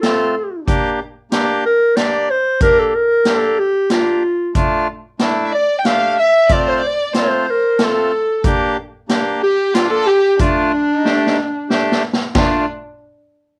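Klezmer in three, festive and soulful, taken from a longer piece. A punchy, present clarinet carries the melody up front in a classical solo style. Beneath it, a reedy, hollow accordion, close-miked, dry and full, supplies the accompaniment over chords moving among F, G minor and D minor. An acoustic street-band drum kit sits mid-forward with dark cymbals, a medium-tuned snare, a boomy kick and a rolled-off top, and it breaks into a fill at 11.1 seconds. A single bowed violin, expressive with vibrato and portamento, joins at 5.5 seconds as a softer second line. The recording sits in a moderate small-room reverb and is colored by worn, warbling cassette tape with drifting pitch.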